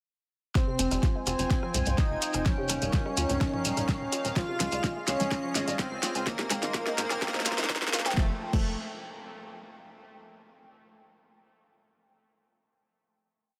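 Driving and hypnotic, this short melodic techno piece builds from 0.6 seconds on an up-front, tape-warm electronic kick in four-on-the-floor, a deep house kit of fat snare, metallic hats, rim clicks, toms and crash, and grainy hand-played shekere sixteenths, with a punchy galloping sequencer bass and very quiet muted dub chord stabs joining at 0.8 seconds, while a smooth soft supersaw riff, an airy dreamy lead doubling it an octave higher, an evolving resonant pad and a woody wave-folded pluck arpeggio pump with sidechain under filter sweeps and a drum fill before the piece lands on a final F chord at 8.2 seconds.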